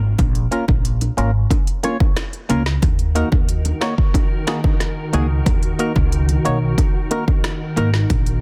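A dark, woody pizzicato upright bass opens this hypnotic, sultry dancehall excerpt, joined at 0.2 seconds by an up-front electronic afro-pop kit with a deep kick, crisp hats, finger snaps, rim clicks and a snare given soft clipping, while round, low-tuned bongos sit in the background. A hollow, organ-like stab with a fast attack and a chorus and phaser treatment adds mellow percussive accompaniment, and from 2.8 seconds a glassy, ethereal FM pad with ensemble chorus and its own reverb holds slow-blooming chords as the harmony moves from Bbm to Ebm. The mix is dry, dense and heavily limited in a modern style.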